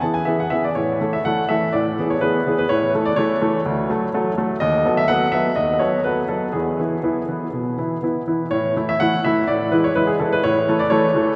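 A clear, intimate baby grand sits up front, its action noise audible and its long sustain carried into a wet cathedral reverb. This cheerful, graceful classical-period sonatina for solo piano moves in a straight four, with the piano ranging from D2 up to A5 throughout. The short passage, cut from a longer piece, states its opening section and begins it again at 8.5 seconds.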